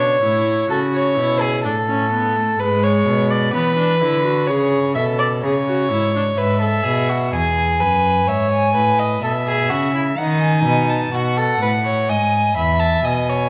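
A close, gut-string violin carries the melody from 6.4 s, its reedy, full tone placed up front in this lively, elegant baroque-style fugue for string quartet, heard as an extract from a longer piece. Beneath it, a second violin with a dark, nasal colour supplies a second line throughout, sounding more distant yet still forward. A smooth-topped viola accompanies from the start and drops out at 6.2 s, just before the melody arrives, while a close, full-bodied cello anchors the bass from beginning to end. All four are single bowed players with period-style gut strings, moving at 63 BPM in straight 4/4 in A major. The harmony settles on A and E7/G# before turning to E and reaching B7 on the way back to E, all wrapped in the wet bloom of a recital hall.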